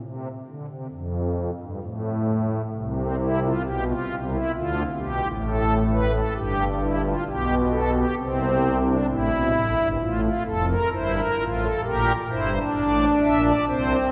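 Bathed in a long, wet church reverb, this joyful, lively passage cut from a longer baroque-style three-part fugue places a solo pipe organ up front, voiced on soft, shimmering string and celeste stops. The organ plays throughout, spanning from deep bass notes to the upper treble in a steady, straight 4/4. Its voices open before any chord is established, then settle into a harmony that moves from C through Dm, G, C and F to Gm, lending the strict counterpoint a romantic glow.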